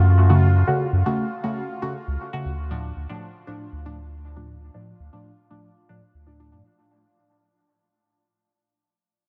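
A straight 4/4 pulse at 118 BPM carries this meditative, nocturnal dub techno excerpt, cut from a longer piece and fading out across its 6.8 seconds as the harmony shifts from F#m to Dm at 2.7 seconds. A round, sine-like sub bass sits up front, while a deep, mellow chord stab entering at 0.3 seconds decays through chorus, phaser and dub echo, its triangle-and-sawtooth tone evolving under a filter sweep. Far beneath them, a bubbling, resonant sawtooth texture drifts in random filter steps, detuned and washed in chorus and its own reverb, all inside a dense, heavily limited modern master with light room reverb.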